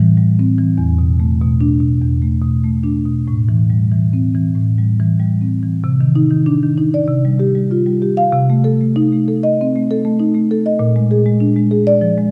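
Flowing and hypnotic, this contemporary classical excerpt for solo marimba moves at 97 BPM in a straight 4/4, its soft mallets drawing a woody, round, mellow tone from the rosewood bars, which sit up front across a range from E2 to F5 within a wet concert hall reverb, as the harmony drifts from A minor through Am7 and E7sus4 before shifting to C dorian at 5.9 s, passing through Cmadd9, Csus4 and Cm6 to arrive on Bb7 at 10.8 s.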